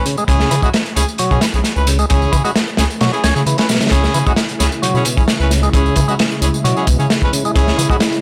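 Funky and energetic, this short breakbeat excerpt moves at 132 BPM in a straight 4/4, sitting on a C# minor chord throughout. A crunchy breakbeat kit sits up front with a tight kick, a medium-tuned snare and hi-hat, its saturated sound carrying a rolled-off top, while an electronic tambourine adds a layered, produced shimmer beneath it. A thick, saturated sub bass with a fast attack holds down the low end, and an overdriven tonewheel organ plays a gritty, percussive riff full of key click and vibrato, touched by analog delay. Bright horn stabs cut through from the opening moment, also carrying analog delay, giving the groove a pop-style punch. At 4.4 seconds a phased analog pad enters with swirling, airy sustained chords, its detuned sawtooth tone roughened by vintage 12-bit sampler grit and pumping under phaser and chorus, all within a dry, gritty hardware-recorded sound.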